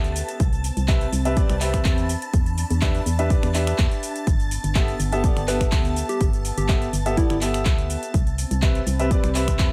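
A dry, close-sounding cut from a longer piano house track in G major at 124 BPM, feel-good and euphoric, built on a clear, woody upright piano riff with dub echo over a hollow, organ-like FM bass, both pumping to the sidechain, joined by a punchy electronic kick that enters at 0.4 seconds. Tape-warm house drums with metallic hats add cabasa, finger snaps and handclaps in a small room, while a shimmering string machine playing violins and a warbling, nostalgic lo-fi pad sit in the background. The harmony moves through Cmaj7, Em7 and G69, and at 5.5 seconds a round, gentle struck synth lead with 12-bit sampler grit, chorus and dub echo briefly carries the melody.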